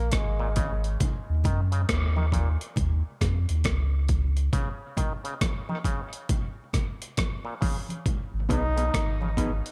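A bright, distant trombone opens this hypnotic, heavy dub reggae fragment with a brief phrase steeped in dub echo, over a round sine sub bass that sits deep and up front. A gritty, sampler-style breakbeat kit follows almost at once, its thumpy kick, hi-hat and rim click overdriven and compressed with a small-room crunch, all riding a lazy swung sixteenth feel. A twangy auto-wah clav spins stringy arpeggios through dub echo low in the mix, while thin-skinned, damped congas enter at 1.0 seconds, filtered and saturated in the background. Much of the passage works as a sparse break before the trombone returns at 8.5 seconds, joined by a dark, clean, fingered electric guitar playing accompaniment. Light digital ambience frames this cut, which is lifted from a longer piece.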